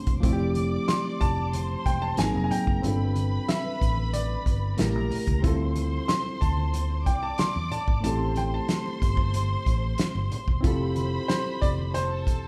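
Captured as a band playing live in one room with a moderate large studio reverb, this cinematic, bittersweet excerpt of lush 1970s-style soul in A minor moves at 92 BPM in a straight 4/4, as a clear, intimate baby grand piano with audible action noise carries the melody from 0.9 s over a reedy, barky, lightly overdriven electric piano, a dark, round, foam-muted fingered electric bass, an up-front drum kit with a fat snare, tight kick and pumping room, very quiet bright, damped congas, and a smooth-topped bowed string section adding an expressive second line with vibrato and portamento.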